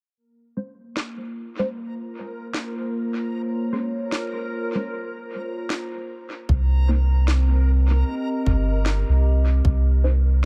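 Ambient dub in Bb dorian at 76 BPM, deep and meditative, cut from a longer piece and riding a swung sixteenth-note feel. A warbling, nostalgic pad with a lo-fi, tape-like character holds sustained chords through chorus and its own reverb, while a filter sweep runs across it. Muted, detuned sawtooth chord stabs with a bright edge pass through phaser, ensemble chorus and dub echo. A woody electronic snare, low-pass filtered and sent into dub echo, sits quietly in the echo-heavy mix, and a reversed, granular texture adds a dreamy shimmer on a single high Bb. At 6.5 s the harmony shifts from Bbmadd9 to Cm7 as a round, soft sub bass and a tight, up-front electronic kick drum arrive together, grounding the haze beneath a light room reverb.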